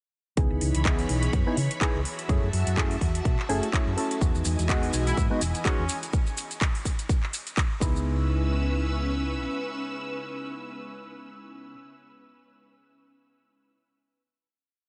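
A swung-sixteenth, four-on-the-floor groove at 125 BPM drives this groovy, nostalgic filtered disco house piece in C# minor: a punchy, tape-warm kick sits up front with metallic hats and claps, maracas join at 4.2 s, and a round, funky hollow-body bass line runs beneath a barky electric piano riff and lush sawtooth string-machine chords with phaser and ensemble chorus, while a distant horn section adds a brief phrase with analog delay; the hats, maracas, bass, keys, strings and horns all pump under sidechain, and after the final hit at 8.1 s the keys and strings ring on to 11.7 s.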